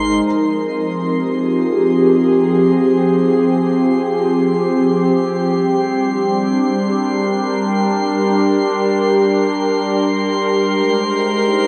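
Serene and luminous, this ambient fragment from a longer piece drifts at 69 BPM in a slow, straight 3/4. A warbly, tape-like synth pad sits up front, holding sustained chords that move from Fm7 to Gm at 5.5 seconds and on to Abmaj7 near the close. Its detuned sawtooth-and-triangle tone is nostalgic and lo-fi, softened by chorus, phaser and a shimmering reverb tail. High above it, a glassy, bright texture of sine-like harmonics hovers around C6 at a much lower level, fading in from 0.3 seconds with calm, drifting overtones. A huge, wet ambient reverb with an 8.7-second decay surrounds both parts, so the sound feels suspended and airy.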